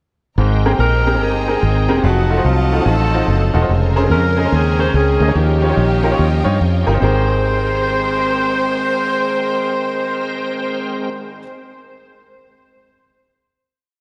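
Uptempo gospel in Ab major at 145 BPM with a swung, soulful and jubilant feel, opening with a breakdown before settling onto a final chord at 7.0 seconds. A punchy, foam-muted fingered electric bass sits up front with walking and running lines full of slides and chromatic approach notes, while an intimate baby grand piano with audible action noise and a lush chorus plays off-beat, close-voiced chords. Behind them a shouting, lightly overdriven tonewheel organ holds drop-2 chords through a slow rotary speaker, distant bowed strings add an expressive pad with portamento, and from 0.8 seconds a smooth-topped saxophone section carries a motif-based melody with light vibrato and delay, all in a dreamy mix drenched in plate reverb.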